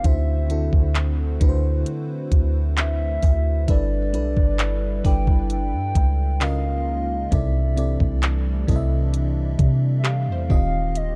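Romantic and smooth, this contemporary R&B excerpt sets a hollow, woody clarinet-like synth lead with vibrato over a lush, dreamy FM electric piano with a soft pad layer and tremolo, a dark analog pad in the background, a deep, round 808-style bass and a smooth drum kit with a knocking kick, handclaps and hi-hat up front, while a glassy wavetable pluck with digital delay joins at 3.7 s as the chords move from D7 to G6 and on through rich sixth-ninth colours in a dry, dark mix.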